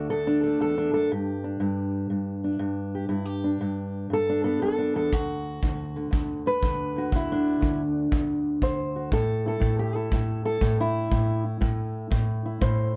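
A dark, woody fingerpicked steel-string acoustic guitar with old strings carries the melody up front in this gritty, swaggering excerpt of acoustic country blues, moving through D, G5 and A5 at 120 BPM in 4/4 with a swung eighth-note feel in D major. A tight, natural kick drum played with brushes enters at 5.1 seconds and sits up front beside the guitar. A moderate booth ambience keeps the sound close and dry.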